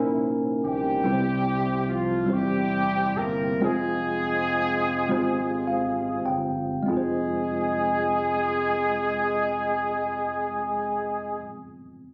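A slow, fervent gospel fragment in 6/8 and F harmonic minor opens on a C7b9b13 chord. A mellow horn section carries the melody with vibrato and octave doubling, over a worn, slightly out-of-tune tine electric piano up front and a dark, round, punchy fingered electric bass. The tempo slows from 1.0 to 6.9 seconds as the harmony moves from C to Fm, and the electric piano plays a fill from 5.1 seconds, all captured on a phone in a large studio that lends the horns a distant, roomy tone and gives the soulful sound a compressed feel.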